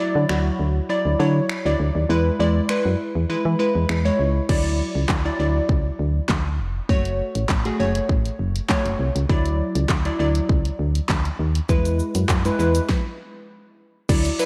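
A straight 4/4 pulse at 100 BPM drives this energetic, bittersweet dance-pop piece, tuned slightly sharp at A4 = 441 Hz. The electronic, layered pop drum kit sits up front, with a punchy kick, a fat snare, hi-hat, shaker, handclaps, finger snaps and a crash cymbal, all re-recorded in a small room. Alongside it, a round, dark FM bass with a fast attack and decaying notes pumps against the sidechain. A glassy, crystalline wavetable pluck carries the accompaniment, detuned and layered with noise, ring modulation, a filter sweep and a moving notch, and treated with chorus and the same sidechain pumping. The harmony moves between Dadd9, E and F#m, a new section begins at 4.5 seconds, and the music stops from 12.9 to 14.1 seconds within this cut from a longer track, all framed by light reverb and digital ambience.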